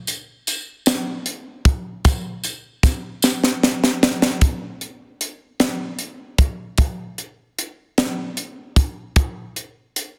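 A crisp, polished acoustic drum kit and a jingly tambourine open this short gospel fragment together, setting a jubilant, soulful mood in 6/8 with a straight feel. The drums sit up front with a high-tuned snare, a tight kick and hi-hat, and the studio room gives them an airy quality. A drum fill begins at 3.2 seconds, and the tambourine drops out at 3.6 seconds. From 4.4 seconds a new section starts, and the kit carries on alone until the clip ends, cut from a longer piece. Light reverb and a small room ambience surround the playing, and the dense, heavily limited modern master keeps the sound full and forward.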